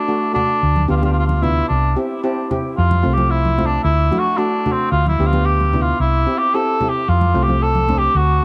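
A straight 4/4 calypso groove at 112 BPM in C major sets a sunny, carefree mood in this brief cut from a longer piece, as a mellow cor anglais with light vibrato and a soft attack carries the solo melody up front through analog delay, a shimmering, metallic steel pan played with medium rubber sticks in double seconds accompanies close and dry, medium-tuned congas with a thick skin sit in the background, and a round, dark hollow-body electric bass anchors the low end, the whole captured as a home cassette recording with a light small-room reverb.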